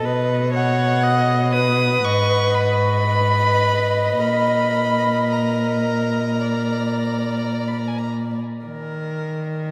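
Yearning and melancholic, this slow, rubato romantic movement for string quartet in Eb minor, cut from a longer piece, sets a dark, woody first violin melody played sul tasto and entering at 0.5 s over a smooth-topped second violin, an intimate, airy-bowed viola and an up-front, softly attacked cello bass, all bowed with vibrato and bathed in the long echoing reverb of a vast cathedral, before the second violin drops out at 8.4 s and the lower strings carry on to 9.7 s.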